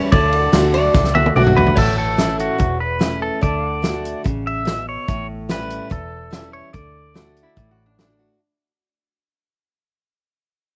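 A straight, steady four-beat groove drives this sunny, down-home honky-tonk clip, cut from a longer classic country piece, with a natural small-room drum kit up front, its fat snare and punchy kick rolling through a fill at 0.9 seconds. A dark, round, foam-muted electric bass sits under the kit, while a bright dreadnought acoustic guitar picks out the accompaniment. Up front, a twangy, compressed pedal steel carries the melody with fingerpicked slide lines and volume swells. Behind it, a second, brighter pedal steel holds high sustained chords, and a very quiet, lush bowed string section adds smooth vibrato chords until 1.8 seconds. A metallic, nasal lap resonator guitar slides in with a brief second line, returning near 7.4 seconds as the music fades out. The guitars carry plate reverb and cassette-tape color, and the home recording has a light, homespun room sound.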